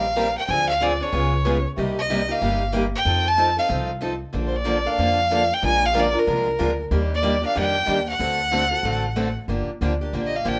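A bright, intense bowed violin with vibrato carries the melody up front in this swinging, virtuosic stretch of gypsy-jazz string swing, taking a solo from 9.5 s as a G minor seventh chord arrives. Two picked steel-string guitars accompany it through a progression of seventh chords: a boxy, parlour-sized one sits up front, and a warmer auditorium-toned one stays in the background until 9.3 s, with finger squeak from fresh strings audible on both. A woody, thumpy gut-strung upright bass plays pizzicato up front, and a moderate club reverb gives the short cut from a longer piece a lively sense of room.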